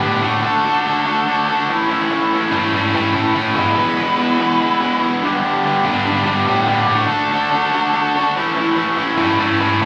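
Heard through a club PA with a moderate room reverb, this rowdy, raw rock excerpt in straight 4/4 pairs a bright, overdriven, double-tracked garage guitar riff placed up front with a dark, distorted octave-fuzz lead guitar melody sitting lower in the mix, each carrying slapback echo over a D, A, E, G progression.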